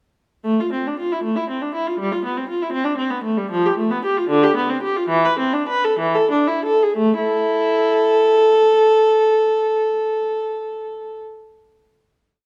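Classical in a baroque style, this short suite movement for unaccompanied viola is solemn and flowing, set in A minor and 6/8 with a rubato feel at 56 to 82 BPM in dotted quarters. A single bowed viola plays throughout, from 0.4 to 11.2 seconds, spanning D3 to B4 with broken-chord figuration across the strings. Its gut-string tone is reedy with a smooth top, shaped by light vibrato and period-style playing, and it sits up front in a moderate recital hall reverb. The harmony moves from A minor through E minor over G, F, and a diminished chord on B over D, then A minor over E and E7, as the tempo slows from 2.7 to 7.0 seconds. At 7.0 seconds the piece settles onto a final open A chord that rings until about 10.9 seconds.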